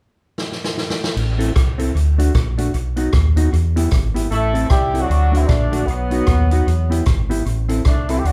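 A live band in one room with light reverb plays mischievous, energetic ska at 152 BPM in A dorian, swinging its eighths, in an excerpt cut from a longer piece. A swinging big-band drum kit with a punchy kick and medium-tuned snare opens with a fill at 0.4 seconds. The round, dark fingered electric bass joins at 1.2 seconds, and a clean hollow-body jazz guitar follows at 1.4 seconds over a cycle of Am, D, B and Em. At 4.3 seconds a tight horn section takes the melody up front, smooth-topped with light vibrato and octave doubling.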